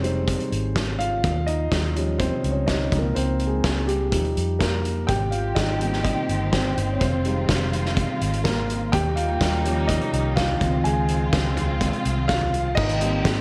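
Uplifting and warm, this piano-driven pop piece in straight 4/4 is cut from a longer work. A mellow, smooth grand piano with a vintage character and long sustain sits up front, carrying a solo line across both sections over chords moving from Fm7 through Eb7 and Dbmaj7. Underneath, a foam-muted fingered electric bass gives a round, punchy, amped low end, while a loose acoustic drum kit adds a tight kick, a fat snare, dark cymbals, hi-hat and toms with a roomy, rolled-off feel. At 5.1 seconds, as the harmony lands on Abmaj7, a bowed studio string section enters with sustained chords, its soft attack, vibrato and expressive portamento sitting distant behind the piano. A moderate echo chamber reverb and studio ambience lend the mix a gentle sense of space.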